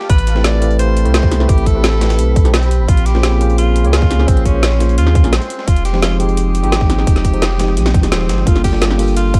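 A dark, warm mix opens this melancholic, soulful excerpt of liquid drum and bass at 172 BPM, where a clear tenor saxophone with light vibrato and scooped notes carries a jazz-style solo through dub echo, while a shimmering, ethereal pad with granular detuned unison and sidechain pumping sits in the background. A deep, full sub bass with octave and tube saturation sits up front beside a tight electronic kick and a drum and bass kit with a woody snare and metallic hats, while a gritty, overdriven soul sampler-style kit adds filtered hi-hat and snare behind them. A worn, slightly out-of-tune tine electric piano through a combo amp and lush chorus enters at 0.3 seconds over chords moving from Am9 through Bbm9 and Fm9 to Gm9, with a band accent at 8.1 seconds.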